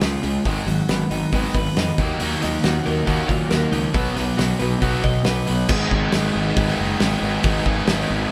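Dark and brooding, this short cut of quiet-loud alternative rock moves at 137 BPM in a straight 4/4, centred on G# dorian. A bright, twangy twelve-string electric guitar picks compressed, clean arpeggios over chords moving from G#m7 through D#madd9 to B, alongside a tight distorted guitar riff and a growly, overdriven fuzz bass played with the fingers. The loose indie drum kit sits up front, with a punchy kick, fat snare, dark cymbals and a rolled-off top in a pumping studio room. At 2.2 seconds a thick fuzz guitar joins from the background with a riff of its own, and at 5.7 seconds the twelve-string drops out as the music lands on G#m and a full, lightly overdriven tonewheel organ enters with sustained chords through a slow rotary speaker and chorus vibrato. The band plays live in one room, with moderate reverb giving the sound a natural, close-knit depth.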